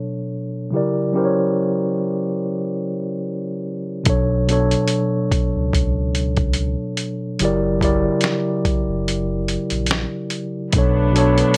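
Light reverb lends a hazy, reflective air to this 72 BPM lo-fi hip hop excerpt in B minor, swung gently in 4/4, where a mellow, clean, low-pass-filtered tine electric piano sits up front and moves between Bm9 and F#7b9b13 chords. At 4.1 seconds a gritty, compressed sampler-style drum kit with a thumpy kick and fat snare joins alongside a deep, sustained sine sub bass doubled at the octave, and the groove reaches a break at 9.1 seconds. At 10.7 seconds a close, intimate string section enters with soft-attack bowed chords, its vibrato and smooth top adding a warm glow as the piece returns to Bm9.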